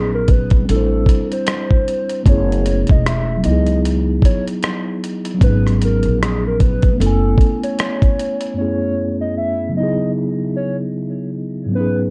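Nostalgic and hazy, this lo-fi hip hop excerpt in F# dorian moves at an unhurried 76 BPM with swung sixteenths, its dark production touched by light reverb. A mellow tine electric piano with cassette-tape coloring holds the chords behind a warbling, detuned lead whose square, sawtooth and triangle tones carry chorus, vibrato and an analog delay. A woody, growly pizzicato upright bass sits up front until 7.4 seconds, and a gritty, compressed sampler-style kit with a thumpy kick, hi-hat and rim click enters at 0.3 seconds and drops out at 8.6 seconds, leaving the keys and lead to drift on alone.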